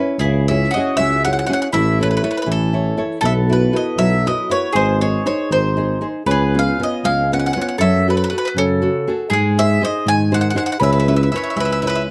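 Lively and romantic, this Italian folk serenade fragment in a rubato 6/8 opens with a bright, full-bodied fingerpicked nylon-string guitar at 0.0 seconds before a picked, double-strung bowl-back mandolin enters up front at 0.2 seconds carrying the melody in a plate reverb, joined by a softer second mandolin line and a mellow, punchy tuba bass, all captured by close, detailed microphones in a lightly reverberant room as the chords move from C#m through Bsus4, C#7 and F#madd9 to a closing C#m7.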